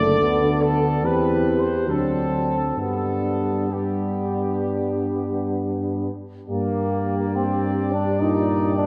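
This classical, hymn-like passage for brass band unfolds in a serene, lyrical mood with a freely breathing rubato feel, cut from a longer piece. All five parts sound together throughout, with a mellow trumpet section carrying the melody with soft attacks and light vibrato, while a French horn section sits in the background with a smooth, gentle second line. A bright trombone section plays tight accompaniment, joined by a solo euphonium whose warm, vintage-tinged tone carries vibrato. Underneath, a mellow, up-front tuba anchors the bass. The harmony moves from a D chord through C and D7 to settle on G, then turns to a minor colour at 6.5 s, where a new section begins. A wet church reverb with a long 3.1-second decay surrounds the ensemble in a spacious, resonant church acoustic.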